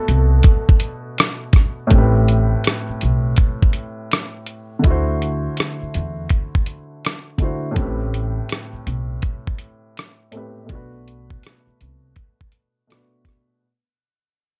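A swung 82 BPM groove in 4/4 comes from a gritty, compressed, sampler-style soul drum kit, with a thumpy kick, hi-hat and rim click sitting up front beside a woody pizzicato upright bass, in this nostalgic, melancholic lo-fi hip hop fragment in A dorian. A breathy, mellow flugelhorn with light vibrato and scooped notes plays a brief jazz-style solo phrase on A4 until 1.1 s, low-pass filtered and trailed by tape echo, while a present, polished upright piano, also low-pass filtered, moves through chords such as Am9 and D9. The dry, cassette-toned mix starts fading out at 1.9 s and keeps fading through the end at 13.6 s.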